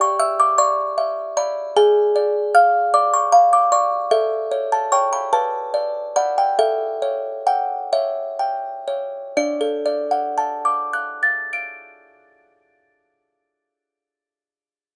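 A classical lullaby for solo music box, this short excerpt from a longer piece drifts along in a gentle 6/8 with a dreamy, tender mood. The music box sits up front in a close, detailed recording with little reverb, its delicate, tinkling plucked notes ranging from D4 up to D7. Its small-box tone is bright and slightly out of tune, which adds to the fragile, intimate charm. From 2.9 to 9.4 seconds the pace gradually slows, easing through a chord progression that moves from Em7/G through G#dim7 and A7 to Bm and back to A7. At 9.4 seconds a brief contrasting passage arrives on a D major chord, settling the phrase before the music box falls silent at 13.8 seconds.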